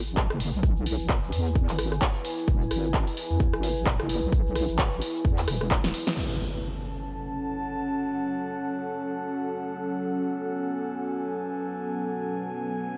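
A swung 130 BPM pulse drives this gritty, aggressive bass house excerpt in F# minor, with a punchy electronic kick, a house kit of punchy snare, handclaps, rim clicks, bright hi-hats and crash, and a grainy tube shaker pushing under a heavy, saturated wobble bass that pumps with chorus and overdrive over an E chord. A deep, warbling ambient pad hums beneath it all, and after a drum fill the groove drops out at 6.2 seconds as an electronic impact hits and the harmony shifts to F# minor. From 6.7 seconds a soft, breathy pad floats in over the moody pad, both pulsing in a lush hall reverb.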